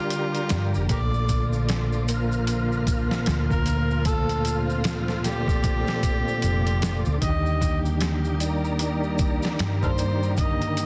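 Dense, heavily limited and set in a small room, this smoky, hypnotic trip hop piece at 76 BPM swings its 16ths and moves from Gm through Bbmaj7 to Ebmaj7 at 7.2 seconds, as a gritty, overdriven harmonica solo with tongue slaps, scooped notes and tape echo plays jazz-style lines over a smooth tonewheel organ with fast rotary speaker and chorus vibrato, lush bowed strings, a round hollow-body electric bass, a pitched-down, compressed sampler-style drum kit with a thumpy kick up front, and maracas in the background.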